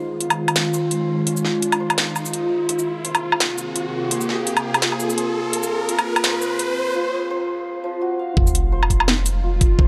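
A bright, string-like sawtooth drone with phaser, vibrato and a filter sweep, shimmering hammered santur arpeggios through delay, and a deep, mellow sine 808-style bass open this tense, spacious half-time drum and bass excerpt in F minor at 169 BPM, moving from Fm7 to Abadd9 as an electronic riser and sub drop build from 0.3 s over an up-front, tape-warm kit of cracking snare, metallic hats, shaker and woodblock, until, after a short break, a knocking electronic kick lands with the drop and an impact at 8.4 s.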